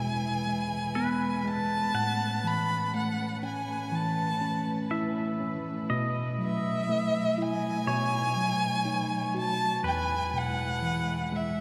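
Hopeful and intimate, this slow acoustic folk-pop ballad moves at 61 BPM in a straight 4/4 feel in E major, cut from a longer piece. A single dark, bowed violin sits up front and carries the melody expressively, with vibrato, portamento and a smooth top. Beneath it a worn, slightly out-of-tune tine electric piano, lightly overdriven and heard through built-in speakers, lays down the accompaniment, while a bright, twangy pedal steel guitar, played with fingerpicks and compressed, adds a clean second line of slide phrases and volume swells. A chamber string section holds sustained chords with light vibrato and a soft attack. The harmony moves from E through Aadd9 to B7sus4 and B7 before settling back on E at 9.8 seconds, all of it bathed in a cavernous cathedral reverb that makes the room sound vast and echoing.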